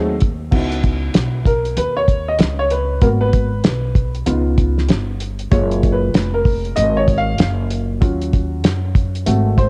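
A swung 96 BPM groove in 4/4, with sixteenths lilting at 61% swing, drives this mellow, cool jazz-hop cut from a longer hip hop piece. The cloth-damped drum kit arrives at 0.2 seconds with a thuddy, dry sound: a fat snare, a tight kick, hi-hat and crash cymbal, its rolled-off top roughened by vintage 12-bit sampler grit and cassette tape. Underneath, a pizzicato upright bass on steel strings sits up front, thumpy and warm. From 0.5 seconds the upright piano takes a solo, dark and smooth with short sustain and a vintage cassette tint, moving through jazzy chords such as C#m11, G#m9, C#9 and F#maj9 before settling on D#m7. Light reverb and small room ambience give the whole piece a cozy, homemade cassette character.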